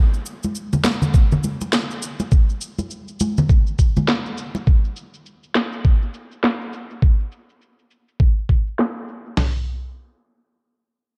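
Meditative and hypnotic, this downtempo excerpt at 102 BPM in 4/4 with a 60% sixteenth-note swing opens on a low-pass-filtered electronic cabasa and sharp snare (0.1 s), joined by bright, close and dry congas from 0.4 s to 4.6 s and a gritty, compressed, tape-hued sampler-style soul kit with thumpy kick, medium-tuned snare, hi-hat and toms from 1.1 s, while a filter sweep moves across the drums under light reverb in a dark production.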